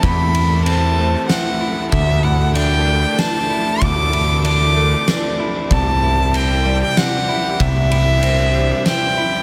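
This brooding, cathartic post-rock passage in 3/4 opens with the full band at once: a focused, bowed solo violin with vibrato carries the melody up front, while a very quiet symphonic string section holds biting, intense sustained chords beneath it. A clean, compressed electric guitar and a bright, ringing vibraphone with slow motor vibrato, the latter set in the background, weave delayed arpeggios through the harmony as it moves from Am/E to Dsus2 at 1.9 seconds and on to C at 5.7 seconds. Underneath, an overdriven, round picked bass growls up front and drops out at 8.7 seconds. An oversized, low-tuned acoustic kit pumps in a big room, with a boomy kick, a fat, gritty snare and dark ride cymbal, stopping at 9.0 seconds. The mix sits in light reverb with small-room ambience, and the passage is cut from a longer piece.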